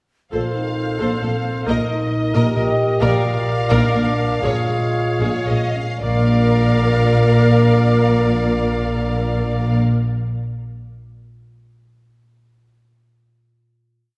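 In a straight 6/8 at 70-90 BPM counted in dotted quarters, this complete, soaring and heroic adventure film cue in Bb major states its theme over F/Bb, Eb/Bb, Bb and Db/Bb, slowing from 2.3 to 6.0 seconds before settling on a final Bb chord at 6.0 seconds. A lush, vibrato-rich violin section carries the melody, while a second violin section in the background plays a driving ostinato and answers at phrase ends. A clear oboe, a soft-attacked clarinet and a very quiet, airy flute section add chords in the rhythm of the tune, and expressive violas add their own background ostinato. Underneath, a French horn section holds sustained chords, cellos drive a bass ostinato doubled by a rich double bass section, and a bright, ringing concert harp spreads broken-chord arpeggios that carry on to 10.1 seconds, all heard from further back in a wet scoring-stage reverb.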